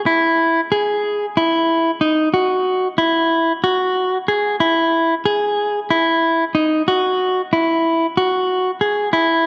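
Progressive instrumental in E major, moving at 185 BPM counted in eighths across an odd 7/8 metre with a straight feel, this short section, cut from a longer piece, sounds intricate and bright. A single clean electric guitar carries it alone from 0.1 to 9.5 seconds, picked within a narrow span from D#4 to G#4. Its tone is dark and compressed, sitting up front in the mix with spring reverb on the guitar itself. The overall sound is dry and close, in the manner of a 1970s studio recording with little room ambience. The tight register and odd-metre pulse give the passage a compact, puzzle-like character.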